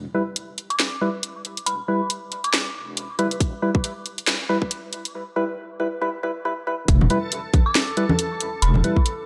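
A dark, echo-chamber sheen frames this meditative deep dubstep excerpt in E minor at 138 BPM, half-time with swung 16ths, where a wobbling, saturated sine-and-square bass rolls beneath hollow, percussive organ stabs that carry dub echo over a build-up and filter sweep that breaks at 5.1 seconds before dropping at 6.9 seconds, when a tight, tape-warm kick has already joined the overdriven garage kit's cracking snare and hi-hats, low-tuned vintage congas enter, an eerie, inharmonic FM bell returns up high, and a reversed, granular swelling texture drifts in.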